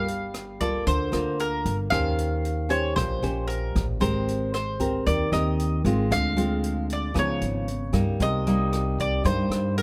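Intimate and melancholic, this short bossa nova fragment moves at 115 BPM in a straight 4/4, set in G minor with tuning at A4 = 442 Hz. A picked mandolin carries the melody up front, its doubled strings giving a round tone in a narrow register between Bb4 and F5. Beside it, a fingerpicked classical nylon-string guitar supplies warm, close accompaniment across the progression of Gm9, Eb13, Abmaj9, Dm7b5, C#9 and Cm7. An upright bass with steel strings plays pizzicato, woody and thumpy, down to G1. An acoustic jazz drum kit enters at 0.1 s and sits further back, with hi-hat, rim click and a boomy kick heard naturally in a studio room. Close, detailed microphones and little reverb keep the sound dry and present for the full 9.8 seconds.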